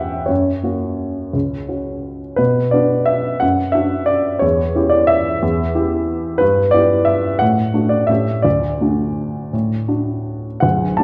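A solo upright piano opens this wistful, elegant classical waltz, its woody, present tone sitting up front with short sustain as it moves through a rubato 3/4 at roughly 159-189 BPM. The harmony drifts through minor and diminished colours before settling into D major from 6.4 s, closing on a dominant seventh that resolves home at 8.4 s. A wet recital-hall reverb and a dark production give this brief cut from a longer piece an intimate, shadowed glow.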